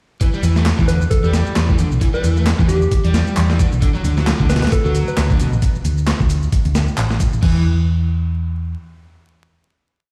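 The sound is of a big sound system in a bare stone room: dry up close, with stony reflections and a bed of vinyl crackle. This is a swaggering, gritty breakbeat track with a swung sixteenth feel, built on a compressed, sampler-style looped break with edits, a thumpy kick and medium-tuned snare sitting up front alongside hi-hat and crash. An overdriven electronic layer of shaker and handclaps rides over the break, while a dark, round, hollow-body fingered electric bass pushes a punchy dotted-rhythm line. A crunchy, double-tracked picked guitar repeats a 16-step riff through tube saturation, 12-bit sampler grit and dub echo. A soft, keys-like FM synth lead with a fast attack adds short, bright phrases, coloured by chorus, an AM radio sound and dub echo, until it stops at 5.2 seconds. The drop moves between two chords until 7.4 seconds, and after the guitar drops away the bass carries on alone until 8.7 seconds.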